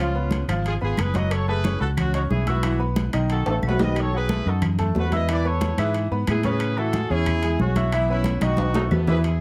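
Closely miked with light reverb, this short, danceable salsa cut from a longer piece moves with a joyful, straight four-beat drive over a chord cycle that reaches B7 around each drum fill at 3.5 and 8.4 seconds. A distant, roomy horn section carries the melody with light vibrato over a brilliant, worn grand piano whose action noise is audible, while a dark, round, punchy fingered electric bass sits up front. Thin-skinned congas and woody claves stay in the background beside ringing metal-shell timbales, and a vintage saxophone section slips in briefly at 8.8 seconds.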